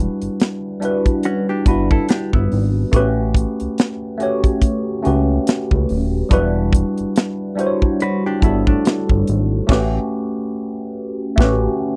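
A worn, slightly out-of-tune tine electric piano with phaser opens alongside a fat analog bass colored by ring modulation and a filter sweep, quickly joined by a tight, up-front funk drum kit, as this soulful, late-night neo-soul R&B excerpt at 71 BPM swings through Em9 and A13 in E dorian, while a dark, picked hollow-body jazz guitar adds a quieter second line at 1.3 s and 8.0 s before a band accent lands at 9.7 s, all heard in a close, dry 1970s-style studio sound.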